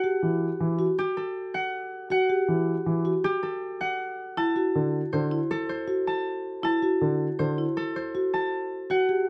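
Set in a straight 6/4 at 159 BPM, this brief cut from a longer minimalist classical piece moves with a propulsive, hypnotic pulse in D mixolydian, tuned to A4 = 444 Hz. A marimba played with medium mallets runs arpeggios between E4 and G4 from the very start, its full, dry tone sitting close and up front. Above it, a concert harp carries the melody from G4 to A5, fingerpicked and ringing, though it sits somewhat lower in the balance than the other parts. A baby grand piano joins at 0.2 seconds with present accompaniment in the low D3 to E3 register and drops out at 7.6 seconds. The harmony rests on Gsus2 before shifting to D7 at 4.4 seconds, all wrapped in light reverb and a dark, warm production.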